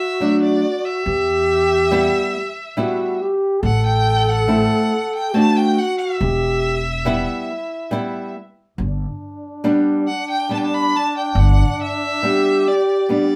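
A clear, focused bowed violin with vibrato sings the melody of this festive, soulful klezmer piece in 3/4, cut from a longer performance, over a breathy, whispered trombone second line, a fingerpicked flamenco guitar accompaniment and a woody, thumpy pizzicato upright bass on gut strings that plays from 1.1 s to 11.6 s, all captured live in a small, wet-sounding room as the harmony turns toward G at 8.8 s.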